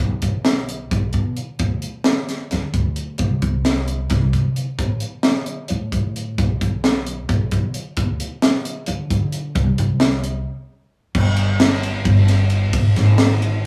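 An up-front, crisp fusion drum kit with a high-tuned snare, punchy kick and an airy, polished character drives this bright, playful math rock and midwest emo excerpt in 7/8 at 264 BPM in eighths, with a straight feel. A woody, thumpy pizzicato upright bass with steel strings plays beneath it through the whole clip. A break at 10.5 s leads into a new section at 11.2 s, all captured in a rough rehearsal-room recording with a short, moderate small-room reverb.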